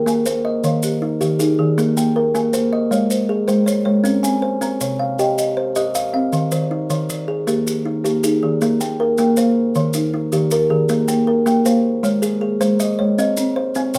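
A soft-mallet folk marimba and an up-front, ringing kalimba begin together at 0.0 seconds, spinning interlocking arpeggios in a hypnotic, trance-like southern African traditional cycle at 105 BPM in 12/8. The marimba sounds dry, round and rustic beside the kalimba's woody, thumb-plucked board, while grainy maracas join quietly at 0.1 seconds. Moderate studio reverb lends a gentle space as the harmony circles among Eb, Ab, C minor and Bb in this passage cut from a longer piece.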